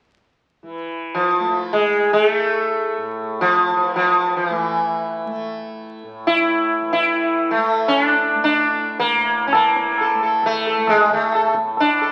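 A buzzing, plectrum-plucked sitar with shimmering sympathetic strings sits up front, entering at 1.1 seconds over a softly plucked tanpura drone that begins at 0.6 seconds, in this meditative, radiant fragment of Hindustani classical music. At 9.5 seconds a high-tuned, ringing tabla joins, close and dry. The large studio reverb and the crackle of a very old 78 rpm record give the whole an aged, glowing character.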